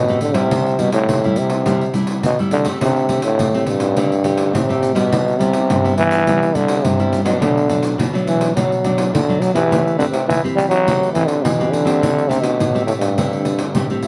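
A lively, festive blend of samba and choro moves at 104 BPM in a straight 4/4, cut from a longer piece and running about 14 seconds. A growling trombone carries the melody up front in a jazz-style solo, its raspy, gritty tone softened by a gentle attack and a vintage character. Beneath it, a fingerpicked nylon-string guitar supplies classical-leaning accompaniment through changes such as D7sus4, Am7, Cmaj7, a rootless Gmaj9/B and Am9. A jingly pandeiro, played with soft hands, enters at 0.1 seconds and sounds distant, as if set in a large room. Close, detailed microphones and light reverb give the recording an intimate, clear presence.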